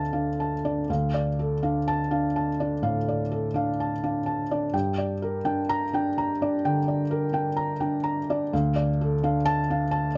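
A felt-muted upright piano plays alone in this intimate, wistful neoclassical minimalist fragment in D minor, moving at a rubato 63 BPM in 4/4 through Dm, Gm and back to Dm, its soft, dark, mellow tone heard up front and close in a dry room where the action noise of the vintage instrument is clearly audible.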